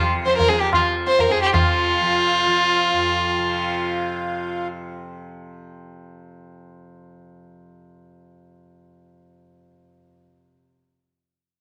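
In a straight 5/4 at 131 BPM that speeds up through the opening seconds, this introspective, longing Hindustani classical fragment sets a pure, floating sul tasto violin melody up front over a reedy, breathing harmonium second line in the background, while low-tuned, short-ringing tabla plays from 0.3 to 1.7 seconds and a buzzing, shimmering tanpura drone carries on after the violin stops at 4.6 seconds and the harmonium at 4.7 seconds, sounding until 10.5 seconds, all set in a wet spring reverb.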